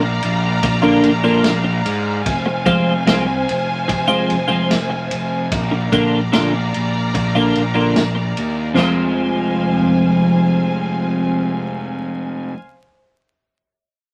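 A straight 4/4 pulse at 74 BPM drives this dark, hypnotic psychedelic rock passage in F dorian, with a vintage drum kit of punchy kick, medium-tuned snare and dusky ride and china cymbals holding the beat until 9.0 s. Up front, a bright, twangy twelve-string electric guitar plays a riff through a rotary speaker, while a fuzz-drenched picked bass adds an overdriven low end and a lush, bowed string section sustains chords moving between Bb and Fm. Light reverb and a layer of vinyl crackle give the cut, taken from a longer piece, an aged, vintage sheen.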